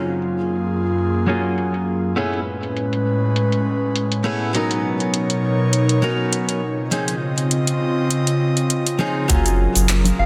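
A dense, heavily limited mix set in a lush hall carries this blissful sunset chillout passage, where a clean, dark hollow-body archtop guitar with delay and an airy, breathy chorused pad hold the maj9 chords over a filter-swept deep house kit of metallic hats, handclaps and cabasa, until a round sub bass and deep analog kick arrive at 9.3 seconds, soft-handed congas at 9.9 seconds, and a distant soprano saxophone with vibrato and tape echo at 10.2 seconds.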